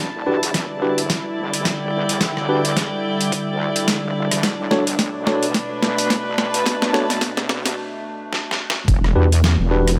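In this swaggering, funky glitch hop excerpt, an up-front boom bap drum kit brings pitched-down, gritty hi-hat, rim click and medium-tuned snare, overdriven and set in studio ambience, while a compressed, thumpy electronic kick sits very quietly beneath. A heavy, wobbling bass built from detuned sawtooth and sine layers holds the low end with a saturated, chorused tone. A bowed string section, also up front, brings gut-string tone, light vibrato and a reedy edge until 7.8 seconds, and a clean tine electric piano played through a combo amp adds stabs that pump with sidechain and echo through delay. Beneath them, a warbling, nostalgic lo-fi pad holds sustained chords with a slow attack and long release, colored by chorus, phaser and pumping. Drum fills drive the build over Em7 and Bm7, a break opens at 7.8 seconds, and the drop lands at 8.9 seconds as Em7 returns.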